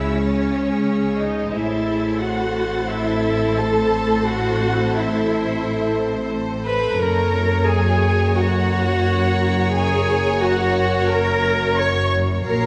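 At a steady 88 BPM in a straight 4/4 pulse, this ominous, uneasy cinematic excerpt, cut from a longer piece, moves through C sharp minor, A major add nine and F sharp chords across its 12.7 seconds. Up front, a rich, smooth-topped viola section carries the accompaniment with focused vibrato, while a clear, distant violin section holds the melody in the background and a second, fuller violin section bowed with even vibrato sings a higher second line. Low strings anchor the bass, pairing a clear, lightly vibrating cello section set back in the mix with a rich, focused double bass section. A mellow French horn section with a soft attack and a glassy, ethereal FM pad with ensemble chorus and its own reverb both sustain chords in the background. A close, expressive violin section adds a high texture until 6.6 seconds and returns briefly at 12.4 seconds, all placed in a moderate scoring-stage reverb.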